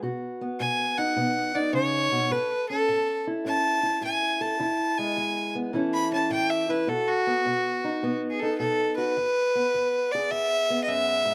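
Swung eighth notes roll along in a steady four, giving this short acoustic country blues cut from a longer piece a rollicking yet soulful lilt, tuned a touch below concert pitch. A fingerpicked steel-string parlour guitar, dark and boxy, opens alone at 0.0 seconds to lay down the accompaniment. A single bowed fiddle joins at 0.6 seconds and carries the melody as a solo up to 9.2 seconds, its rich, earthy tone marked by light vibrato and an airy bow, and it sits close and slightly louder than the guitar. The harmony moves through B, A and E before a new section begins on E at 9.2 seconds. Both instruments sit up front with a slapback echo, and the outdoor recording has little reverb, leaving the sound dry and intimate.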